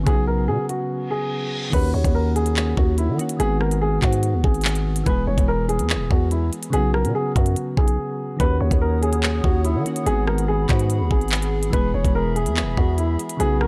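The production is dark and digitally ambient, with the drums, bass and piano sitting up front in a short excerpt of ominous, tense drill-style hip hop at 144 BPM, felt in half-time in Eb phrygian. An electronic drill kit with a knocking kick, crisp hi-hats, handclaps, rim clicks and crash cymbal drives the track, while a growling, buzzy 808-style bass with a fast, decaying attack anchors the low end. A dark, mellow baby grand piano carries the melody with an intimate, natural tone, audible action noise and short sustain, touched by delay. Underneath, soft, rounded electric-piano-like synth keys with chorus, tremolo and a filter sweep fill in the harmony over a looping progression of Bsus2, Ebm7, Abm7 and E. A brief electronic reverse cymbal rises at 1.1 s within a break that began at 0.9 s, another break arrives at 8.0 s, and at 8.8 s a warbling, lo-fi, detuned tape-like pad with a slow attack and built-in reverb enters with nostalgic sustained chords.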